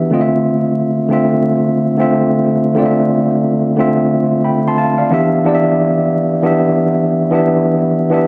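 Hip hop with a swung feel, dark and reflective, carried by a lone tine electric piano that plays alone from 0.0 to 8.3 seconds, moving from Dm7 to Em7 at 5.1 seconds. The piano sits up front, worn and slightly out of tune yet clean, heard through its built-in speakers and colored by cassette tape, filtering and analog delay. The gritty hardware recording sits in a moderate studio reverb with vinyl crackle, and this short cut is lifted from a longer piece.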